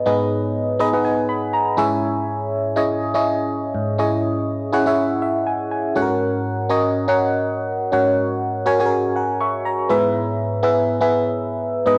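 A glassy, bell-like FM electric piano plays alone and up front through this moody, urgent pop fragment, its fast, decaying attacks carrying a noise layer and a light sixteenth-note swing, dressed in chorus, phaser and cassette-tape grit, with fills at 0.6 and 5.0 seconds, all set in a moderate spring reverb on a home cassette recording tuned slightly sharp at A4 = 443 Hz.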